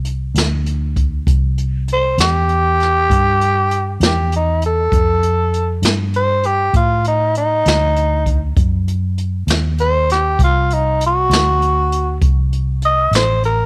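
Rollicking and soulful, this slow blues in 12/8 at 66 BPM opens with a dark, foam-muted electric bass and a brushed jazz kit with a boomy kick in a small, dry room, before a growling, breathy tenor saxophone enters at 1.9 seconds for a raspy, vibrato-laden solo with scooped notes over chords moving from Cadd9 through F13 and Cdim to C5.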